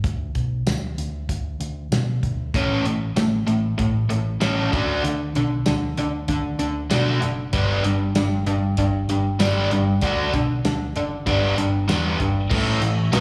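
A straight 4/4 groove at 96 BPM opens this swaggering, confident classic rock excerpt, cut from a longer piece and captured live at a gig through the venue's PA with club reverb. A damped 70s drum kit plays throughout, its fat snare, tight kick, hi-hat, crash cymbal and tambourine sounding dry with a rolled-off top, while a picked electric bass, dark, round and amped, holds down the low end in A mixolydian. At 2.5 seconds a biting overdriven guitar enters up front, double-tracked and picked, driving the riff as the chords move from Bm through A, D and G. At 12.5 seconds a clean, clear tonewheel organ slips in behind the band with sustained chords turned by a slow rotary speaker, landing on A as the passage closes. The whole mix also carries a light studio reverb.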